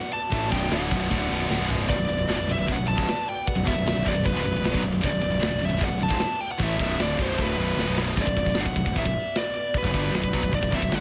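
Epic and relentless, this heavy metal excerpt in B minor drives forward at 153 BPM in a straight 4/4, opening on a B minor chord. A dark, high-gain lead guitar sits up front with the melody from the very start, joined by a very quiet, lush symphonic string section holding bowed, vibrato-rich chords beneath it. At 0.3 seconds the full band crashes in: a tight acoustic drum kit with a tight kick, medium-tuned snare, toms and crash cymbal, plus a growly, fuzz-laden picked bass. Two bright, distorted rhythm guitars churn out the riff in the background alongside a softer, double-tracked crunchy guitar, creating a dense low-end wall. Drum fills mark the way at 1.5 and 7.8 seconds, the second ushering in a new section at 8.2 seconds, all set in a light, small-room ambience.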